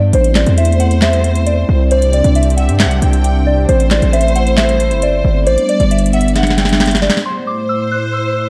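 A half-time trap groove rolls along on a booming analog drum machine, with a crisp snare, handclaps and metallic hi-hats set in a short room, and a drum fill at 6.4 s before the machine drops out at 7.3 s. Beneath it, a punchy, heavy 808-style bass with a sine body and a noise layer sits up front, hitting fast and decaying. A soft, pure FM synth bell carries the melody high above, its mellow tone colored by chorus, phaser and tape echo. A detuned sawtooth pad with a filter swell holds sustained chords through the piece, its evolving texture thickened by chorus. A distant, smooth studio violin section adds a bowed second line with vibrato, touched by tape echo. The whole brooding, eerie hip hop cut has dark production, light reverb and digital ambience, and it moves through minor-leaning chords from Am to Csus2 and G before returning to Am.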